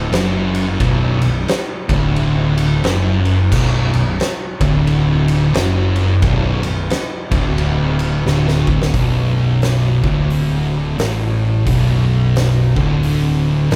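A swung 4/4 groove at 88 BPM drives this brooding, hypnotic stoner and doom metal excerpt in B minor: two thick fuzz guitars pick a low, distorted riff in the background, a warm overdriven electric bass sounds direct and amped beneath them, and an oversized low-tuned acoustic drum kit with a boomy kick, fat snare, dark cymbals and a gritty, pumping room sound plays a fill at 8.3 seconds before the next section arrives at 8.9 seconds, the band heard playing live in one room with light reverb.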